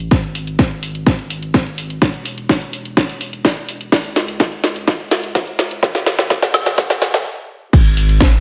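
A deep, thick, saturated sine sub bass with a fast attack and a tape-warm house kit of crash, hi-hat, cracking snare and woodblock (hats, woodblock and crash pumping against the sidechain, as the bass does) open this driving, expansive progressive house build-up, joined at 0.1 s by a punchy, up-front electronic kick while a drum fill runs until a brief stop at 7.3 s, the mix set in light reverb through a high-pass filter.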